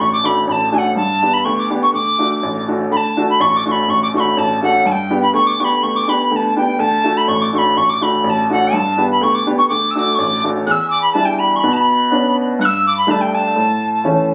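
Celtic folk in a lively, cheerful 2/4 lilt, this short cut from a longer piece sets an airy, tongued tin whistle with chiff and vibrato over a clear, woody, slightly detuned upright piano accompaniment, both playing throughout in a phone-captured room with club reverb, before the opening D and G harmony turns toward a minor-tinged passage from 10.7 seconds.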